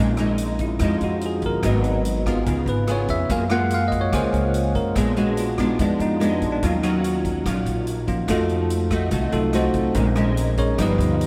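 A straight 4/4 bossa nova groove at 144 BPM in Bb minor, with a wistful, melancholic mood, moves through chords from Bbm11 to Gbmaj9, Bb7b9 and F7b9 before returning to Bbm11. A bright, bell-like tine electric piano takes the solo up front from the start, over a fingerpicked classical nylon-string guitar with ensemble chorus, and a woody, growly pizzicato upright bass. The drum kit enters at 0.2 s, softer in the mix, with hi-hat, rim click and a punchy kick in a natural big-room sound, and the whole dreamy mix is soaked in a huge ambient reverb in this fragment of a longer piece.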